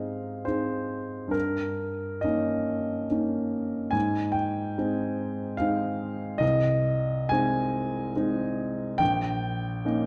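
Classical romantic character piece for solo upright piano, lyrical and hopeful in mood, moving at 70 BPM in 3/4 with uneven beats and a flexible rubato feel. Set in Ab major, the harmony passes from Ab through Eb7/G, returns to Ab, then moves to Ab/C and arrives on Eb7/Bb at 9.0 seconds, leaving the phrase open as this short section from a longer piece closes at 10.1 seconds. The piano spans Bb1 to Ab5, sounding warm, woody, intimate and polished, with long sustain and audible action noise that keeps it close and up front. A wet recital hall reverb with a 1.8-second tail surrounds the instrument, and the dark, warm production rolls off the top end, giving the sound an enveloping glow.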